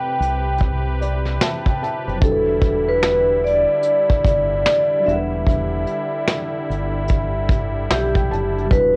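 A hazy home recording on cassette, with light reverb, frames this short, nostalgic lo-fi hip hop excerpt in E minor at a relaxed 74 BPM in 4/4, swung on the sixteenths. A metallic, ringing vibraphone with a slow motor vibrato carries the melody through a band-limited low-pass and tape filter, while a felt-muted upright piano adds soft, intimate accompaniment, its thick felt and audible action noise giving it a dark, vintage character. The piano steps forward with fills from 0.6 to 2.2 seconds and again near the close. Beneath them, a pipe organ on shimmering celeste string stops holds soft, romantic chords, and a round, dark fingered electric bass enters at 0.2 seconds alongside a vintage brush kit of snare, kick, hi-hat and finger snaps, recorded up front in a small room. The harmony moves from Am9 to Em7 at 2.2 seconds.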